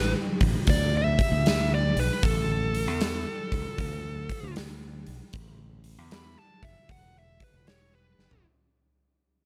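A bluesy overdriven lead guitar takes the spotlight, playing a solo through the whole 8.4-second excerpt with a dark, distorted, picked tone dressed in plate reverb. This is blues rock in the power-trio mould with a southern rock streak, set in A major at 77 BPM with a swung 4/4 feel, and the mood is driving and gritty. Beneath it, a growling fingered electric bass sits up front, bright and punchy with overdrive, while the harmony moves through D5, A5 and E5 power chords. A huge arena drum kit joins at 0.4 seconds with hi-hat, a punchy kick, a medium-tuned snare and toms, its pumping room sound giving it a hall-like scale, and it closes with a fill from 8.1 seconds. The recording is dry overall, fading out across its length as a fragment cut from a longer piece.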